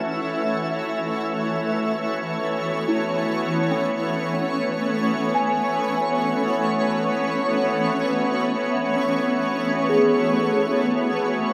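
A bright, shimmering ambient pad sits up front, holding sustained chords that open on F#m7 in free time in F# minor. A delicate, bell-like celesta fades in with soft arpeggios in the background, and a twinkling granular texture sparkles alongside. Together they form a melancholic, reflective 11.5-second excerpt steeped in dreamy plate reverb.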